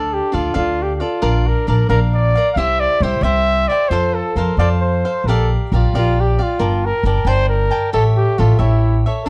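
Dark, warm production with light reverb frames this romantic, proud mariachi fragment in 6/8, cut from a longer piece, where a mellow solo trumpet in classical style sings the melody up front with light vibrato over a bright, crisp picked cavaquinho and a woody, thumpy pizzicato upright bass on steel strings, also up front, as the chords move from Dm through Bb, C and F to Bb6, Gmadd9 and a closing A7.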